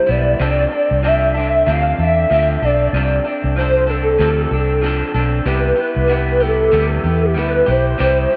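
Light reverb and a digital ambience give this echo-heavy indie pop clip a hazy, sunny glow at 95 BPM, its sixteenths gently swung as the harmony moves from Dm7 to Cmaj7 at 5.5 seconds. A detuned square-and-sawtooth lead carries the melody with a nostalgic warble, its sustained notes bathed in tremolo, ensemble chorus and dub echo. Underneath, a slightly broken-up, compressed lo-fi guitar through a small old amp adds subtle chorus and vibrato, while a dark, round, foam-muted fingered bass sits punchy and up front.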